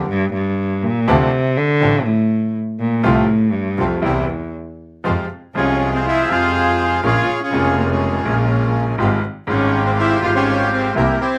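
A bowed cello with a smooth top and vibrato carries the solo at the start of this tense, melancholic tango, with a slapback echo trailing its focused tone. Underneath, the music moves at 122 BPM in 4/4 with a rubato feel. A bright, polished concert grand piano supplies the accompaniment, its deep bass and audible action noise giving it an intimate presence, while a single bowed double bass holds the low end with a clear, boxy sound. Up front, a reedy bandoneon adds stabs colored by the same slapback echo. At 5.1 s the harmony settles into F harmonic minor, and at 5.6 s a second, darker bandoneon takes up the melody from further back in the mix, also with slapback echo. Light reverb and an open-air, roomless quality frame this short cut from a longer piece.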